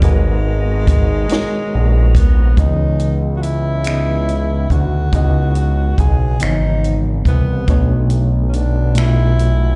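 A slow six-eight groove carries this yearning, late-night R&B fragment, with a dry, compact cocktail kit of finger snaps, hi-hat, punchy kick and high-tuned snare, roughened by vintage sampler grit, sitting up front beside a fat, nasal analog bass with a saturated filter pluck. A breathy tenor saxophone sings the solo melody with scooped notes and light vibrato, while a reedy, slightly out-of-tune electric piano sits in the background with fast tremolo. A lightly overdriven tonewheel organ with key click and slow rotary speaker holds chords until 2.5 seconds and returns at 7.7 seconds as the harmony moves from C#m9 to Bm9, the mix ringing through a bare room with large studio reverb.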